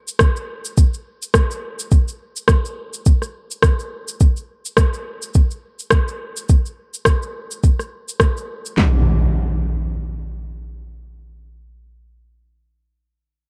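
An electronic shaker and rim click open this sunset chillout excerpt at 0.1 s, sitting up front with a tape-warm, produced character. A moment later a smooth R&B drum kit joins, its soft kick, fat snare and handclaps carrying an easy 4/4 feel at 105 BPM with a gentle swing on the 16ths. The mood is warm and sunny, and the dark production is touched with light reverb. Both drum parts drop out around 8.8 s, when an up-front electronic impact enters and sounds until 12.2 s. The passage is cut from a longer piece.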